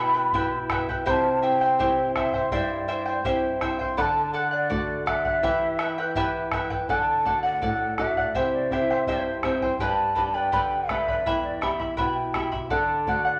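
A straight 2/4 pulse at 82 BPM carries this wistful, melancholic Andean folk piece, a fragment cut from a longer work. A large wooden quena sings the melody, its end-blown tone breathy and mellow, with vibrato, soft attacks and rolled-off highs. Up front, a bright charango is fingerpicked on its double strings, some octave-doubled, for a shimmering texture, while a flamenco guitar adds warm fingerpicked accompaniment lower down, finger squeaks audible. A deep, dark bombo enters at 0.3 s, its compressed, saturated thump sitting beneath the strings. The harmony moves from Em through C and D, then after 6.9 s turns through D, C and G before returning to Em and D, the ensemble set in a wet, large studio reverb.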